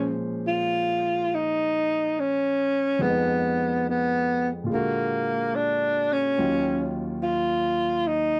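A smoky, intimate jazz ballad in Bb minor at 71 BPM, swung gently in 4/4, this short excerpt sets a breathy tenor saxophone up front on the melody, its mellow subtone, soft attacks, scooped notes and vibrato sounding whispered yet roomy. Beneath it, a baby grand piano plays accompaniment with a natural tone and long sustain, moving through Bbm9, Fm7b5, Bb7b13 and Ebm9. The close, dry 1970s-style studio sound carries light reverb.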